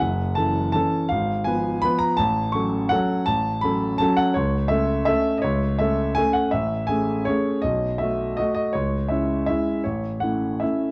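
Graceful and sparkling, this short classical piano waltz moves in 3/4 at 165 BPM, its beats uneven and its pulse stretched with rubato. A concert grand plays solo from 0.0 to 10.9 s, spanning F#1 to C#6, with a deep bass and a natural, up-front presence. The harmony opens on F#m7 and passes through Fdim/Ab and F#m/A before moving on to A/C#, Amaj7 and B7, then settles on C#m and closes the passage on A at 9.9 s. Close, detailed microphones capture the instrument clearly, while a moderate recital hall reverb with an RT60 of 1.5 s gives it a sense of space. The passage is cut from a longer piece.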